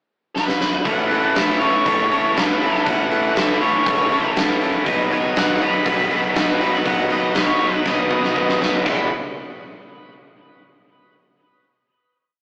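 A straight, driving 4/4 at 120 BPM carries this confident classic rock piece. A punchy arena drum kit with a fat snare and bright cymbals fills in from 0.4 s as a dark octave-fuzz lead with tape echo begins a motif-based melody, then up-front overdriven stack guitar and background distorted guitar play eighth-note chords, a boxy acoustic archtop strums quietly beneath, and a growling bass drives eighths over Aadd9 and B before everything settles on a final E chord at 8.9 s, all wrapped in a rough, saturated AM-radio sound and stone-room reverb.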